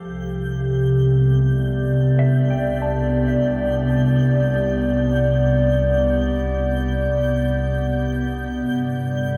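This peaceful, serene ambient excerpt at 55 BPM opens on a warbly, nostalgic tape-like pad holding sustained chords up front, from Cmaj7sus2 moving to Gsus2 near 8.7 seconds, alongside a mellow, dark electric guitar playing clean fingered arpeggios in the background with tape echo and shimmer reverb until 5.7 seconds. A twinkling granular texture fades in with octave-up sparkle high above, while a rich bowed double bass section adds focused, vibrato-laden low notes from 0.1 seconds. Everything sits in a huge, wet ambient reverb with a long 8.0-second decay.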